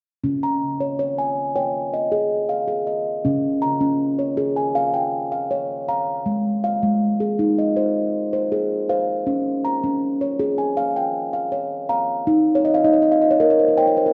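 A straight, unhurried 4/4 pulse at 80 BPM carries this gentle, dreamy world-meditative passage in Db Lydian, taken from a longer piece. A single steel tongue drum, struck with soft rubber mallets, spins round, pure, ringing arpeggios spanning Db3 to Bb5 over a Db, Ab, Db, Eb progression, closing with a short fill from 12.6 to 14.1 seconds. The mellow drum sits up front with a boxy small-room character inside a wet concert-hall reverb, all within a dark, warm production.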